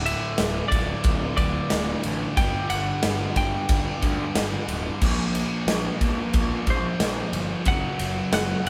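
Bittersweet and anthemic, this short excerpt of quiet-loud alternative rock moves at 91 BPM in a straight 4/4, with a clean, compressed semi-hollow electric guitar carrying the melody through digital delay over chords of D5, G5, Bb5 and F#5. Beneath it, two fuzz guitars, one bright and very quiet, the other dark and distorted, sit in the background with a double-tracked, tight distorted guitar, all picking riffs, while a growly, overdriven picked bass holds the low end. A big acoustic drum kit with a punchy kick, medium-tuned snare, crash and ride sits up front in a bright stone room from 0.1 seconds, the whole band sounding live in one room with light reverb.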